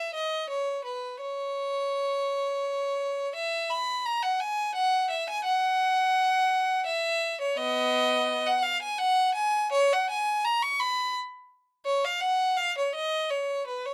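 In a flexible, rubato triple metre, this serene, dance-like baroque-style suite movement for unaccompanied violin is carried by a single up-front bowed violin, clear, smooth and even in tone, with vibrato, spanning B3 to C#6 across the full 13.9 seconds and set in a modest small-room reverb, a fragment lifted from a longer piece.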